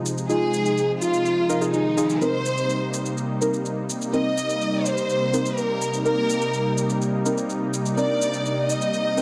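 A moderate scoring-stage reverb gives this short progressive house excerpt a roomy, spacious sound, cut from a longer piece with a driving yet bittersweet mood in a straight 4/4 metre. A lush, airy supersaw pad sits up front with sustained, detuned chords under a filter sweep, moving from Fm7 to Cm7 at 2.2 seconds. Alongside it, a deep, mellow chord stab adds dark, warbling, vintage colour through chorus and dub echo. An overdriven, layered electronic shaker enters at 0.1 seconds with a touch of studio ambience. From 0.3 seconds a soft, round, octave-layered synth lead carries the melody with vibrato, phaser, cassette-tape grit and dub echo, joined by a clear, focused, close-miked studio violin section playing a bowed second line in the same register.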